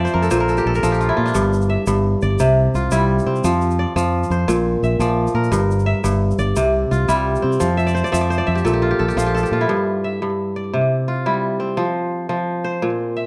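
This West African string and xylophone piece moves in 12/8 at 115 BPM, its straight feel giving a reflective, hypnotic pull in G dorian. The kora carries the music with bright, crisp arpeggios that ring up front, touched by a slapback echo and spanning G2 to G5, with fills opening the excerpt and returning from 7.8 to 9.7 seconds. Beneath it, a fingered electric bass adds a punchy, amped low end from G1 to C3, while a grainy egg shaker sits close and dry in the background. The chords cycle through Bb, G, C and F. The shaker drops away at 9.5 seconds and the bass at 9.7 seconds, leaving the kora alone for the closing section until 13.3 seconds. Light reverb and a dark, warm production round out the sound of this fragment cut from a longer piece.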